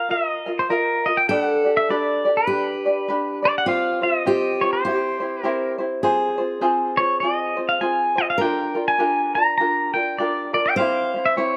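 The pedal steel guitar leads this short Hawaiian excerpt, its clean, electric tone placed up front as it carries the melody between Bb4 and Bb5, played with fingerpicks and slide, compressed and shaped by volume swells. The mood is dreamy and sunny, moving at 101 BPM in 4/4 with a 60% swing on the eighth notes. Beneath it, a fingerpicked steel-string acoustic guitar with an auditorium body adds a warm second line, sitting lower in the mix. A tenor ukulele, thumb-plucked and bright with a light touch, also sits up front as accompaniment, its notes doubled by a slapback echo. All three play throughout the 11.6 seconds over a chord path that opens on Ebsus2, turns to Fm at 6.0 seconds and lands on C, with light reverb giving an open, outdoor air to the sound.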